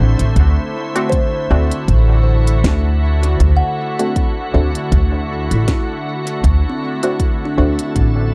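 This hazy, spacious ambient dub excerpt opens on a D7 chord. A soft organ-like pad holds sustained chords through ensemble chorus and its own reverb, while a mellow kalimba rings out arpeggios under tape echo in the background. Muted sawtooth chord stabs are colored by chorus, cassette tape and dub echo, and a pizzicato upright bass sits up front with a thumpy, steel-string tone. A produced electronic kit joins at 0.2 seconds with a woody snare and smooth hi-hats carrying studio reverb and dub echo, followed by a deep, layered electronic kick at 0.4 seconds. The groove moves at 79 BPM in 4/4 with a light swing on the sixteenths in D mixolydian; the pad sounds pure, detuned and slow to bloom, the stabs short and filter-swept, and the overall production dark and warm with little room reverb.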